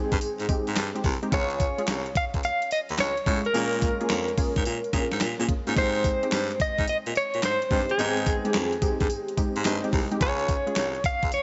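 A clean, direct-recorded electric guitar carries the melody up front with tremolo, while a growling, raspy baritone saxophone plays the bass line in a gritty, close-miked jazz style in this flirty, bouncy new jack swing cut at 108 BPM in Ab major with a swung 16th-note feel. An overdriven 12-bit drum machine with a thumpy kick, handclaps, hi-hat, snare and tambourine sits up front, and a dark, detuned sawtooth polysynth adds punchy chorused stabs until 10.8 seconds. A polished baby grand piano fills in the background over Abmaj7, Db and Bbm7 chords, all in light digital ambience with a soft, rolled-off top end.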